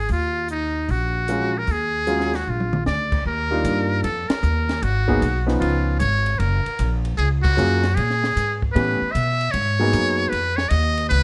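Lightly reverberant and intimate, this late-night, smoky fragment of small-group swing and bop in Eb minor moves at 153 BPM, with a buzzy, thin metal-muted trumpet carrying the melody up front with vibrato and plate reverb, a woody pizzicato upright bass close by, a dark, smooth cocktail drum kit with a high-tuned snare and punchy kick playing a fill at 2.5 seconds, and a concert grand piano with audible action noise accompanying from 1.3 to 10.3 seconds.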